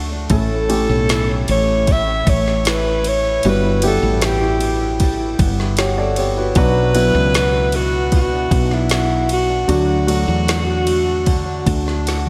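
A breathy, close-miked alto saxophone carries the melody from 0.3 s to 12.0 s, its whispered jazz phrasing full of vibrato and scooped notes, trailed by delay, in this hopeful, heartfelt pop ballad in D major at 77 BPM. Beneath it, a dark, mellow concert grand piano provides the accompaniment while a fingerpicked steel-string acoustic guitar with delay, set in the background, plays arpeggios, and a round, punchy fretless bass with analog chorus sits up front. A smooth R&B drum kit with a soft kick and woody snare keeps time as the harmony moves through A, Emadd9/G, Bm and D, and the kit closes with a fill at 12.1 s, all bathed in a dreamy cathedral reverb.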